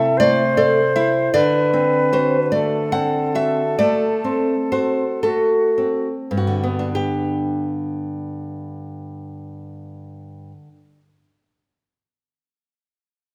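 Up front, a bright, fingerpicked nylon-string guitar carries the accompaniment in this tender, romantic duo in 12/8, cut from a longer piece. A distant silver concert flute sings an airy, straight-toned melody with a crisp attack until 6.1 seconds. The rubato opening slows down over Am/C and D7, settles on G at 7.0 seconds, and the guitar continues alone until 11.2 seconds in a wet recital-hall reverb.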